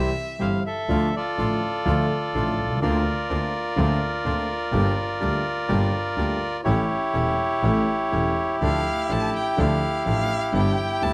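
A reedy, dark bandoneon sits up front and carries the smooth melody from 0.4 seconds in this passionate, sultry tango fragment, which is cut from a longer piece and played with a rubato feel in 4/4. Beneath it, a second bandoneon plays stabs in the background, its sound bright, close-miked, dry and full. A mellow concert grand piano supplies intimate accompaniment, with deep bass and audible action noise that lend it a vintage character. A clear double bass, bowed by one player with vibrato, holds a smooth, even low line. A rich violin, bowed by one player with vibrato and portamento, is heard only briefly at the start and then returns at 8.6 seconds with an expressive second line high above the ensemble. The harmony moves from C to D minor, through Bbadd9/D, G minor and A7, back to D minor and on to G, and a moderate large-studio reverb gives the parts a sense of space.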